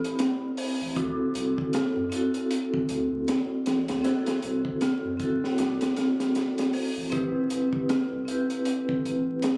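A close-miked vibraphone struck with medium hard mallets carries the accompaniment in this brooding, hypnotic trip hop excerpt at 78 BPM, its metallic, ringing tone treated with tremolo and tape echo over a swung Am7 to rootless D7 progression. A crunchy, gritty, saturated breakbeat kit sits up front with a punchy kick, high-tuned snare and hi-hat, while a round dub sub bass enters at 0.8 seconds and an eerie, inharmonic synth bell plays arpeggios in the background through chorus, phaser and tape echo. The whole sounds as if captured on a phone in the room, with club reverb, small room ambience and vinyl crackle.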